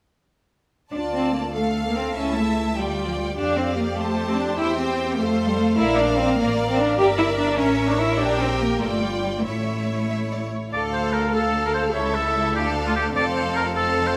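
Up-front, focused cellos drive this urgent, dramatic classical-period orchestral movement in D minor at a quick 99 BPM in 6/8, beneath a clear violin melody, bright second violins, lush vibrato-rich violas and intense double basses, while a warm solo oboe joins on a second line at 10.7 s, all set in a moderate scoring-stage reverb.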